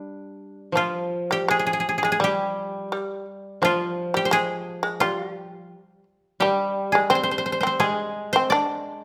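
A moderate recital-hall reverb surrounds this short excerpt of Japanese traditional chamber music, cut from a longer piece, and the instruments sit up front in the room. The mood is austere and calm, with a free, rubato feel over a metre of four. Two kotos, played with fingerpicks, open together: one carries the melody in the upper register while the other plays a softer accompaniment an octave lower, both with a dry, woody, warm tone. At 0.8 seconds a fretless shamisen joins with a second line in the same low register as the koto accompaniment. Plucked with a plectrum, the shamisen is bright, percussive and buzzing.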